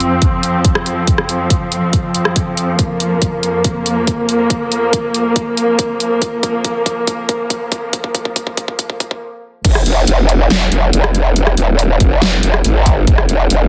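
Heavy wobble dubstep at 140 BPM in a half-time 4/4 feel, this menacing cut from a longer piece opens with a filtered build-up. Dark, veiled con sordino chamber strings hold sustained chords with vibrato and sidechain pumping, over a punchy electronic kick and a dubstep kit of crash, hi-hat, rim click and a huge snare with soft clipping that plays a drum fill. After a brief stop at 9.2 seconds, the drop lands at 9.6 seconds with an aggressive growl bass, wobbling and saturated through a formant filter with chorus and overdrive, sitting loudest in a dense, heavily limited mix with light digital reverb.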